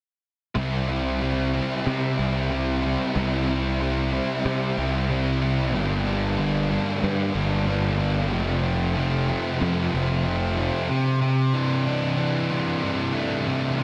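Rock in C mixolydian at 93 BPM in a straight 4/4, this short excerpt from a longer piece feels blissful and dreamy despite its heavy tone. Two up-front electric guitars carry the riff from 0.5 seconds to the end at 13.8 seconds: a biting overdriven guitar, picked and treated with reverse reverb, and a thick, dark fuzz guitar with distortion and a subtle chorus. Underneath, a punchy fuzz bass, picked and overdriven with a direct, amped sound, sits up front until 10.7 seconds. The harmony moves from C to Gm at 5.7 seconds and on to F, before a brief closing section settles on a C69 chord. Light reverb and a dense, heavily limited modern master give the whole a full, saturated sound.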